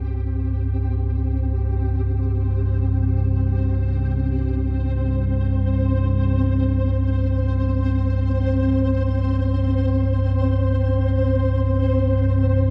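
A deep, rumbling synth drone opens this ominous, desolate dark ambient piece in free time, sitting up front between C2 and G2 with a detuned, warbling, vintage tone and a slow attack. At the same moment, a flickering, grainy granular texture between C4 and C5 fades in over the full 12.7 seconds, quieter than the drone and coloured by its own built-in reverb plus a shimmer reverb. The drone carries its own built-in reverb as well, and its long release keeps the low end dark and sustained. A single C5 chord holds throughout, tuned to A4 = 442 Hz. The whole passage sits in a moderate spring reverb with a 2.5-second decay, and it is cut from a longer piece.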